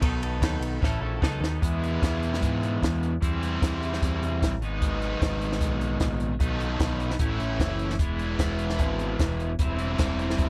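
A straight 4/4 groove at 150 BPM drives this carefree, upbeat indie rock in E major, with a compact cocktail drum kit of hi-hat, kick, ride and a high-tuned snare playing a fill from 0.8 to 1.6 seconds before the main section settles in. A biting, double-tracked overdriven guitar sits up front with a dark riff, while a growling, round picked electric bass with its own overdrive adds a punchy low end under chords that move from B7 and A to E, C/E and G#m. The dry, close sound recalls a 1970s studio, with the airy, polished drums heard in a small room, and the passage is cut from a longer piece.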